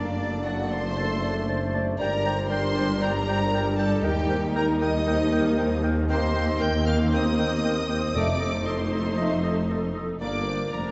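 Cheerful and spirited yet dramatic, this fast romantic orchestral passage at 117 BPM in 4/4 is cut from a longer piece, with a lush, smooth violin section singing the melody over a clear, distant second violin section. A dark clarinet, a mellow, hollow, airy flute and a punchy oboe add second lines, while a warm viola section, dark horn chords, and a low end of bowed, expressive double basses, a mellow tuba and a focused cello section fill the background. Round timpani with soft mallets enter at 8.2 s, and the whole orchestra sits in a wet concert hall reverb.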